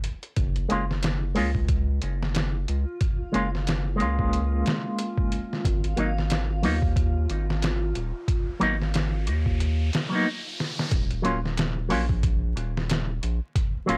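A dry, gritty recording with vinyl crackle opens this hypnotic, smoky trip hop excerpt in Eb minor at 91 BPM, with a swung 16th-note feel, as muffled, compressed, pitched-down sampler drums with a thumpy kick sit up front beside a round, deep analog bass. An electric guitar through an envelope filter and tape echo adds bright, twangy, clean picked playing with tremolo as the harmony moves from Gbmaj7 to Ab5, while a reversed, dreamy granular texture swells in the background from 2.6 seconds. An electronic riser builds from 7.6 seconds into a brief stop and drum fill before the music settles on Ebm7 at 10.9 seconds.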